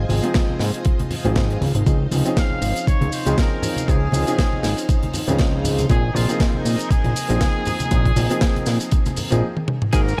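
A dark, softly reverberant studio sound frames this sunny, feel-good nu-disco excerpt at 119 BPM in 4/4, with a light swing on the sixteenths. An up-front, overdriven electronic kick knocks underneath a dry, tight funk kit of bright hi-hat, ride, shaker, snare and toms, while congas with soft hands sit back in a small-room ambience. A fat, nasal analog bass with tube saturation drives the low end, and a baby grand piano with dub echo fills in the middle alongside a lush, vintage string machine whose chorused, slow-attack chords pump in the background. From 2.4 seconds a punchy trumpet section with light vibrato carries the melody, its phrases trailing dub echo over chords moving from Fm7/Ab to Dbmaj9 and then Bb9sus4. A short break arrives around 9.4 seconds, with a drum fill from 9.6 seconds, and a clean, twangy electric guitar touches a single chorused note at 9.9 seconds just before the cut.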